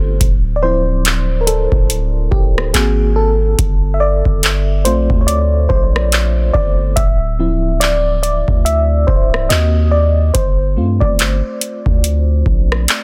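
A dry, dense, heavily limited mix frames this 13-second slice of late-night, longing contemporary R&B at 71 BPM with swung 16ths, where a mellow, warbling FM electric piano with chorus and tremolo carries the solo over Dm9, G#9 and G9sus4 changes, while a deep, sine-like 808-style bass sustains underneath and a booming analog drum machine enters at 0.2 seconds with a deep kick, metallic hi-hats, handclaps and rim clicks.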